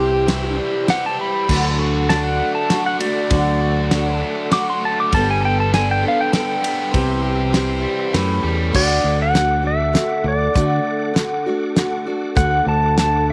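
A twangy pedal steel guitar opens with a solo over picked acoustic guitar, a round, up-front fingered bass, a biting double-tracked overdriven guitar riff and a reedy tonewheel organ. A damped 70s drum kit joins at 0.3 seconds, dry and tight, with a fat snare, hi-hat, kick, ride and crash. The feel is nostalgic and hopeful folk rock with a heartland rock lean, moving in a straight three-beat metre. The clean, compressed steel is played with fingerpicks and slide, while the auditorium-toned acoustic picks its accompaniment beneath it. The organ sits in the background with key click, chorus vibrato and a slow rotary speaker, and its tone is bright. At 8.7 seconds the overdriven riff stops as the steel's solo ends and the harmony settles into a new section, all inside a small room ambience, in an excerpt cut from a longer piece.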